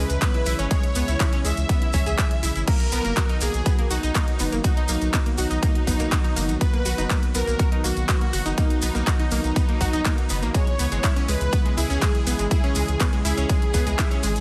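This excerpt opens in a digital ambience, with a punchy, overdriven electronic kick pushed up front from 0.2 s and a thick, saturated sub bass beside it, the bass breathing with sidechain pumping. Set in B major at 122 BPM in a straight 4/4, the progressive house groove feels expansive and uplifting as the harmony moves from C#m7 to Bmaj7 at 2.7 s and back to C#m7 at 10.5 s. A smooth, full-bodied supersaw carries the melody through dub echo, shadowed very quietly by a lush, bowed violin section with expressive vibrato as a second line in the same register. A round, detuned analog pluck spins bright sawtooth arpeggios with a filter sweep, chorus and dub echo, while a warm analog pad holds sustained chords in the background with chorus and pumping. The layered, overdriven big-room kit adds handclaps, hi-hats, ride and crash, its cymbals pumping, and grainy, distant maracas in a large room fill out the percussion.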